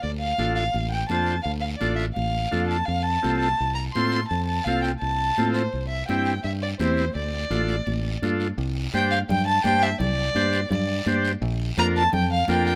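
A lightly reverberant mix carries this passionate, danceable cumbia excerpt at 168 BPM in straight 4/4, where a dark, woody bowed violin with vibrato sings the melody up front over a round, direct fingered electric bass, a buzzy vintage combo organ with light vibrato, raspy dry guiro and bright, high-tuned congas struck with hard hands in the background, moving from Dm through F and C before shifting at 8.6 seconds to Csus2 and Bb.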